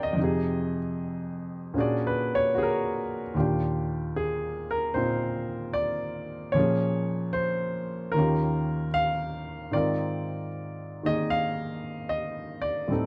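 Intimate and romantic, this jazz ballad at 76 BPM in Eb major moves with a gentle swung 4/4 feel, carried by a solo baby grand piano spanning Eb2 to G5. The piano sits up front with a warm, natural tone, captured by close, detailed microphones and light reverb; it opens on Fm7 and Bb7alt before turning at 3.4 seconds to a new passage through Ebmaj9, Bbm7, Eb9 and Ab69. The clip is cut from a longer piece and runs 13.1 seconds.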